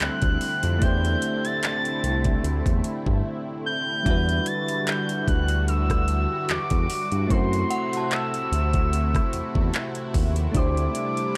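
A gliding portamento lead sits up front, its smooth triangle-and-sine tone carrying vibrato, chorus and tape echo as it sings the melody high above this late-night, sensual slice of contemporary R&B in E minor. The groove moves at 74 BPM in 4/4 with a light sixteenth-note swing, driven by an electronic drum kit of knocking kick, metallic hi-hats, handclaps and rim clicks, alongside a dark, detuned synth bass that also sits forward in the mix. Beneath them, soft electric-piano-like synth keys offer round, mellow chorused accompaniment, while a lush, thick unison pad holds sustained chords with a bright, phased shimmer and a sub-octave weight. After a brief break at 3.2 seconds, a vintage FM synth chime enters at 4.1 seconds in the background, its inharmonic, warbling tone treated with ensemble chorus, tremolo and tape echo until 10.6 seconds. The harmony drifts through suspended, ninth and half-diminished colors, and the whole cut has a dry, gritty hardware character set in digital ambience.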